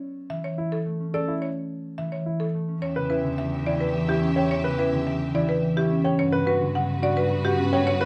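A buzzing marimba struck with hard mallets carries the melody in this meditative, hypnotic stretch of minimalist classical pattern music, its dry, woody, slightly vintage tone sitting high above the texture. It moves in a straight 3/4 at 107 BPM in E dorian, over a mellow, thumb-plucked concert harp that rings up front as the accompaniment from the very start, while a clear, intimate baby grand piano adds arpeggios with its action noise faintly audible. At 2.8 seconds a lush, distant studio string section arrives with smooth sustained chords, joined by a single expressive cello playing the bass line with portamento, both bowed with vibrato. The harmony drifts from a rootless Dmaj7 to Em7 and then Gmaj7, and a moderate large-studio reverb gives the parts a shared sense of space. Cut from a longer piece, it captures the gently repeating, trance-like quality of the work.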